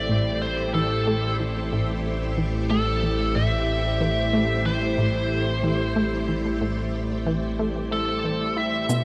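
A vast, echoing cathedral reverb washes over this short cut from a longer piece of ambient, sequencer-driven space music, giving it an expansive, mysterious air at 92 BPM in a straight 4/4 over an Am7 chord. An up-front, biting electric lead guitar carries the melody with overdrive and delay, while a lush string machine holds sustained chords with its vintage ensemble chorus and a fat, thick analog bass anchors the low end. Just after the start, a round, detuned analog pluck riff enters through chorus, delay and a cassette-tape tint, and a very quiet, breathy wind-like tuned noise texture hovers on a single high note. A filter sweep runs on the synth arpeggio sound throughout. In the closing moment at 8.9 seconds, a warbling, lo-fi dusty pluck arpeggio appears briefly in the background, joined by an electronic, tape-warm shaker.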